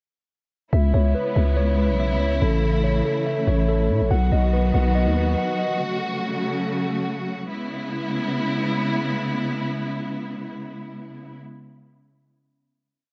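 At 0.7 seconds, a lush, bowed symphonic string section, a mellow tine electric piano and a growling 808-style bass all enter together, opening a menacing, tense drill piece in C# minor at 142 BPM with a half-time feel. The electric piano repeats a clean arpeggio grouped in threes, in eighths, like a sampled loop, sounding as if heard through built-in speakers and trailed by tape echo. Beneath it, the up-front bass delivers buzzy, long sub-bass notes with pitch slides, moving through C#m7, A, B and F#m. The bass drops out at 5.4 seconds and the piano shortly after, leaving the expressive strings, with their vibrato, portamento and smooth top, to hold a final C#m7 chord from 7.5 seconds. The dark production carries light reverb and a touch of studio ambience.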